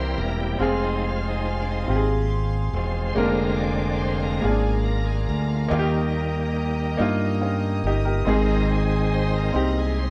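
A shouting, lightly overdriven tonewheel organ with chorus vibrato and key click takes the solo from the first moment of this uplifting, reverent slow gospel passage in 6/8 at 47 BPM in Ab major, carried by clear baby grand piano accompaniment, a punchy, up-front fingered electric bass and a distant, earthy bowed chamber string section holding sustained chords, all in a stone room's live reverb as the harmony moves from C7 through Fm, Bb7/F and Eb to settle on Ab.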